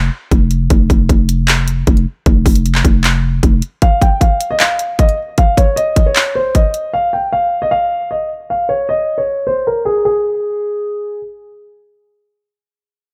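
Hip hop in a trap style, this menacing, eerie fragment from a longer piece moves at 154 BPM in 4/4 with a half-time feel, set in F minor. It opens on a break where a growling, buzzy 808-style bass sits on a low F, its sine-based tone striking with a fast attack and then decaying. Almost at once, at 0.3 seconds, an electronic trap kit arrives with a hard-clipped kick, bright hi-hats and handclaps, given a small-room character and placed up front. The bass drops away at 3.6 seconds, and at 3.8 seconds a dark concert grand piano takes the melody between Ab4 and G5, mellow and intimate with audible action noise and a somewhat boxy body, shaped by a low-pass filter and a filter sweep. The drums then fall away, leaving the piano alone before the fragment closes, all within a light reverb.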